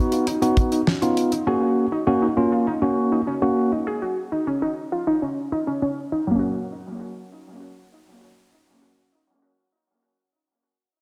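This synth-pop excerpt moves at 100 BPM in a straight 4/4, its wistful yet bright mood set in F# major over a progression of B, F#, D#m and back to F#. A mellow tine electric piano, clean and up front behind a low-pass filter, plays the accompaniment only until 3.7 s. A damped 70s drum kit of hi-hat, kick and snare, dry and dark with a fat snare, tight kick and rolled-off top, appears only briefly, stopping at 1.5 s. Carrying the arpeggios throughout is a warbly, dusty pluck blending detuned triangle and sawtooth tones with a sub octave, a fast attack and a decaying tail, coloured by chorus, tape echo and a filter sweep through the opening stretch. The lush hall reverb wraps the mix in a wet, spacious glow, while a dense, heavily limited modern master keeps it full and forward.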